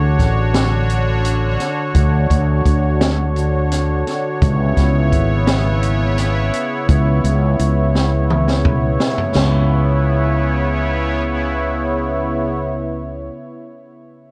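Moving in a straight 7/8 at 170 BPM (eighths), this brooding, tense progressive instrumental, cut from a longer piece in C# phrygian, sets a slow-attack, detuned sawtooth pad with chorus and a bright, up-front fretless electric bass over Dmaj7 and C#m7, while an open jazz drum kit with dark cymbals, a high-tuned snare and a boomy kick plays a fill from 7.9 to 9.4 seconds before stopping at 9.5 seconds, the recording carrying light reverb and the warbling pitch drift of worn cassette tape.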